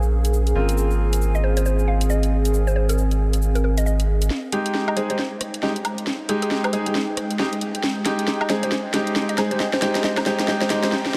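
UK garage in a two-step style, this short cut from a longer piece has a bouncy, late-night mood and a dreamy mix soaked in a huge ambient reverb. An overdriven, up-front garage drum kit drives it with a cracking snare, hi-hat, rim click, cabasa and woodblock, while a rubbery, hollow square bass with a resonant filter pluck sits up front until it stops at 4.3 seconds. A bright concert grand piano plays filtered stabs with analog delay, and a woody, round mallet-like synth pluck carries the melody with vintage warble, chorus and tape color. Behind them, a smooth analog pad holds sustained chords, and a nostalgic, lo-fi tape-like pad adds a warbling texture in the background. From 4.3 seconds the second section builds up under a drum fill that runs to 10.9 seconds, as the harmony settles from Bbm7 and Ab69 onto Fm9.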